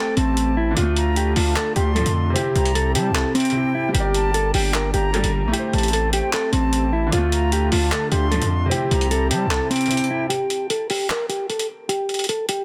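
A saturated, heavy distorted 808 bass sits up front in this eerie, hard-hitting half-time trap excerpt, under gritty, pitched-down sampler-style drums with handclaps and hi-hat that briefly drop out at 3.5 seconds. A dark, clean fingered electric guitar carries the melody through a low-pass filter, while an airy silver flute with vibrato and delay floats above it. A brilliant grand piano, a smooth detuned analog pad with chorus, and lush bowed string stabs in the background fill out the chords until 10.3 seconds, when the break leaves the guitar under a filter sweep with only the drums.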